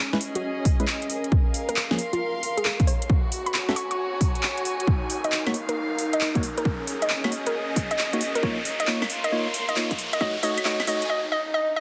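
This bouncy, soulful two-step garage cut moves at 135 BPM in 4/4, its sixteenths swung at 66%, with a house drum kit of cracking snare, metallic hi-hats, handclaps and claves sitting up front from 0.1 s, joined at 0.7 s by a punchy, layered electronic kick that is the loudest part of the mix. A hollow square pluck carries the melody between F4 and Db6, mellow and detuned with a sub octave beneath it, coloured by chorus, cassette tape and delay as a filter sweep runs across the whole passage. A dark, percussive organ stab with a fast attack and decaying tail shares those same effects and its own filter sweep, while a muted, con sordino string section adds a veiled, bowed texture with vibrato, pumping against the sidechain. The harmony moves through Dbm7, Bbm7, Gb5, Ebm7 and Bbm7 again before settling on Gbm, and the whole passage functions as a build-up, with an electronic riser climbing from 0.6 s and a swell taking over at 11.1 s. 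A moderate plate reverb and a dense, heavily limited modern master give this fragment of a longer piece a tight, polished finish.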